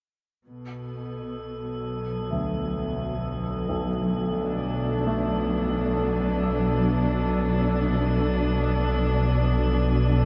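Drenched in a huge ambient reverb, this unsettling, ominous dark ambient drone opens at 0.5 seconds with a lush, bowed cello section sustaining a Bm7 chord up front with vibrato. It is soon joined by an eerie, metallic inharmonic drone thickened with chorus and by a deep rumbling drone with a nasal, detuned edge, and from 2.3 seconds a mellow grand piano adds delayed arpeggios.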